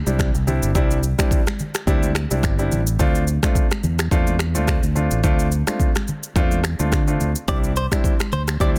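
An up-front afro-pop drum kit with a deep kick, finger snaps, rim clicks, shaker and a soft-clipped snare drives this sunny, romantic afrobeats excerpt, joined by a punchy fingered electric bass, an intimate grand piano with long sustain and audible action noise accompanying over Cadd9 and Dm7, very quiet damped congas, and a bright, clean picked electric guitar riff with tape echo entering at 7.5 seconds, all in a dry, dense, heavily limited modern mix.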